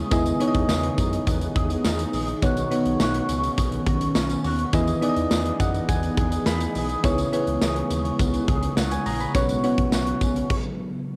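Uplifting and glossy, this short cut from a longer 1980s-style pop piece moves in a straight, steady 4/4 over a progression of Emaj7, Badd9, Emaj7, C#m7 and Bsus2. Soft, mellow electric-piano-like synth keys sit up front with a chorused shimmer and a cassette-tape tint, adding a fill from 5.3 to 7.0 seconds. Behind them, an ethereal, airy pad holds sustained chords with ensemble chorus and its own reverb. A clean, twangy electric guitar through an envelope filter plays a picked, compressed riff with analog delay, while a round, deep analog bass anchors the low end. A big rock drum kit with a punchy kick, bright cymbals and a medium-tuned snare drives the groove from up front, joined by a jingly tambourine in the background. The music sits in a modest booth ambience with a homemade cassette character, and everything stops at 10.5 seconds for a brief pause.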